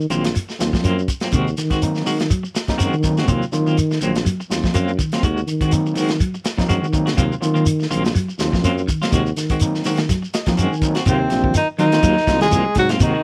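Afrobeat at 123 BPM in Eb dorian with a driving, hypnotic sixteenth-note swing, built on a tuba bass line with light vibrato, grainy shekere, a crunchy, saturated breakbeat kit with a tight kick, overdriven tine electric piano with medium tremolo through a combo amp that plays a fill from 10.1 seconds, picked semi-hollow guitar arpeggios, and clean tremolo guitar stabs over alternating Ebm69 and Ab7/Eb chords, until a breathy, whispered tenor saxophone melody and a punchy background trombone line enter at 11.1 seconds in a dry, close 1970s-style studio sound.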